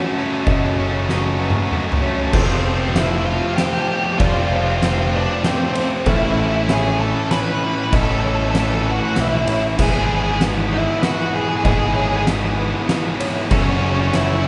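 A dark, fuzz-drenched lead guitar steps up front at 2.3 seconds in this hopeful, cinematic post-rock excerpt at 97 BPM in 3/4, riding over twin distorted rhythm guitars, a growling overdriven bass, an oversized low-tuned drum kit with boomy kick and fat snare that enters at 0.5 seconds and plays a fill during a brief build-up featuring a clean, twangy guitar, a soft felt-muted upright piano in the background and a very quiet brassy analog pad, all bathed in the long reverb of a church or concert hall as the chords move from F#m through Fadd9, Amaj7 and Emaj7/G# back to F#m.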